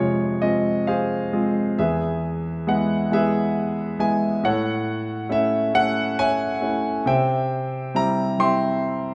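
Set up front in a moderate recital-hall reverb, a clear concert grand piano with deep bass and long sustain plays a calm, tender classical solo in 6/8 at a rubato 45 BPM (dotted quarters), spanning E2 to C6 as its harmony moves through F minor, E, A and C in this 9.1-second fragment of a longer piece.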